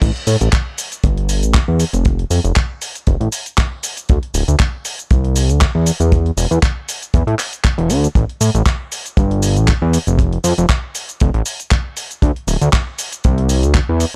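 This sleek, groovy nu-disco excerpt rides a lightly swung 4/4 pulse, driven by a dry, tight, up-front acoustic kick and a gritty, tape-toned sampler-style soul kit of crash, handclaps, hi-hat and shaker in small room ambience, while a fat, detuned sawtooth analog bass with tube saturation, sidechain pumping and a filter sweep sits thick and forward throughout the drop.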